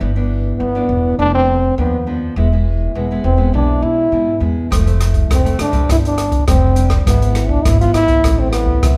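Samba and choro at 102 BPM with a bittersweet, yearning mood, cut from a longer piece, where fingerpicked classical nylon-string guitar sits softly under a woody pizzicato upright bass from the start, a solo trombone with vibrato and scooped notes carries the jazz-style melody from 0.6 seconds, and an open jazz drum kit with boomy kick, hi-hat and rim click joins at 4.7 seconds, all in a moderate recital-hall reverb as the chords move from Em7/G through Fmaj7 to Am.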